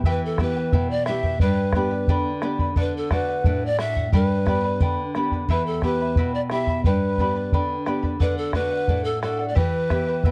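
A dark, warm production in a small, moderately reverberant room gives this short passage, cut from a longer piece, an intimate and melancholic air. It is Andean folk in E minor at 88 BPM in a straight 2/4, moving through Em, G and D in a wistful cycle. A pan flute carries the melody from 0.1 seconds, its airy, hollow, wooden tone sitting up front with a soft attack, a straight tone and a touch of plate reverb. Beneath it, a fingerpicked nylon-string guitar lays down a classical bed with a fresh-strung clarity, while a fingerpicked charango adds a bright, shimmering layer from its double strings, some doubled at the octave. A round, dry bombo sits close in the mix, supplying the ensemble's percussion.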